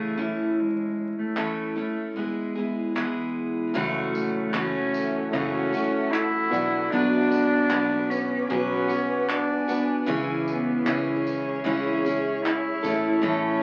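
A reflective, wistful acoustic pop excerpt opens with an intimate, airy-bowed cello melody over a bright, full-bodied picked steel-string acoustic guitar up front, joined at 0.2 seconds by a distant, roomy brushed drum kit with a boomy kick, dark crash, handclaps and tambourine; at 3.7 seconds a very quiet, barky, lightly overdriven reed electric piano and a round, foam-muted electric bass enter, followed at 4.9 seconds by a cloudy, detuned granular pad in the background, all heard through the crackle of a very old 78 rpm record.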